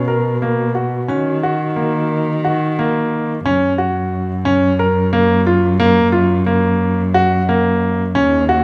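Heard in a moderate recital hall reverb, this short, urgent and restless fragment of contemporary chamber music in 7/8 sets a concert grand piano's up-front, deep-bassed arpeggios against a dark, veiled muted cello bowing the bass line close with vibrato and portamento, while a metallic, airy vibraphone with fast motor vibrato rings in the background as a second line until 3.1 s.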